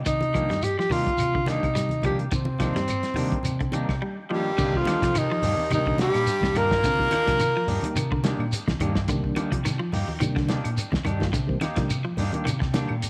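Hypnotic and defiant, this afrobeat excerpt rides a dry, muffled soul drum kit, grainy shekere, bright congas and woody claves beneath a round, dark hollow-body bass on a Cm9 chord. A breathy, whispered alto saxophone carries the melody up front until 8.3 s, joined at 4.3 s by an edgy tenor and a raspy baritone saxophone on a second line, while a clean semi-hollow guitar plays arpeggios with tape echo and a twangy, slightly broken-up guitar through a small old amp adds stabs with spring reverb and tape echo. In the background, a soft, flute-like tonewheel organ with slow rotary speaker and chorus vibrato accompanies and plays a fill at 3.5 s, set in a small room with light reverb.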